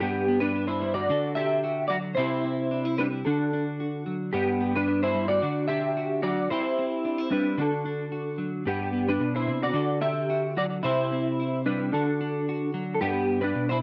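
Two clean electric guitars start together at 0.0 seconds in this carefree highlife piece, cut from a longer performance and moving at a straight 111 BPM in 4/4 and G major. The lead guitar carries the melody between B3 and E5, its picked tone warm and up front, colored by an ensemble chorus and a slapback echo. Beneath it, the second guitar plays accompaniment from G2 to A4 with a darker, compressed, picked sound bathed in lush chorus, also sitting close in the mix. The harmony cycles steadily through G, D, C and D, landing back on G at 13.0 seconds before the passage ends at 13.8 seconds. The sound is a dry, close 1970s-style studio recording with moderate ambience and a short 0.5-second decay.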